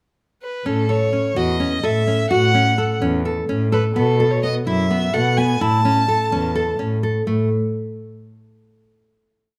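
A rich, bowed violin with smooth vibrato carries a motif-based melody from 0.4 seconds over a fingerpicked nylon-string guitar ostinato with finger squeak and a dark, expressive cello playing root-and-fifth bass with portamento, in a shimmering, playful piece of contemporary chamber music in 7/8 at 254 BPM in A lydian, closely recorded with light reverb and ending on a final note at 7.3 seconds.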